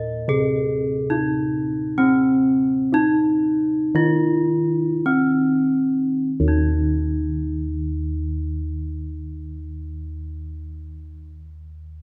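In a straight 4/4 that drifts between 47 and 77 BPM and slows through the first 6.3 seconds, this serene, ceremonial Javanese gamelan passage in Eb pelog barang is cut from a longer piece. A bronze metallophone carries the melody up front with a dark, smooth, ringing tone struck with a horn mallet, while bossed gongs hold the bass beneath it with a round, beating sound and a boxy small-room colour. A reverberant recital-hall ambience surrounds the pair as the music moves into a new section at 6.3 seconds.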